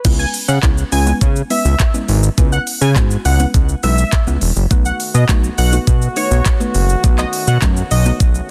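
This dense, heavily limited dance-pop drop has a digital ambience and a bittersweet yet confident mood, opening on a knocking, tape-warm pop kit with crisp hats, handclaps, shaker and crash set up front beside a fat, saturated sawtooth bass that pumps with sidechain compression. A bold, retro octave-doubled lead carries the melody with chorus, vibrato and digital delay, while a hollow, bouncy square pluck with phaser and a moving notch sits mellow in the background. At 4.7 seconds, as the harmony shifts from C#m7 to B7, a clear brass section enters with light vibrato and a soft attack, sustaining tight, classical-style chords.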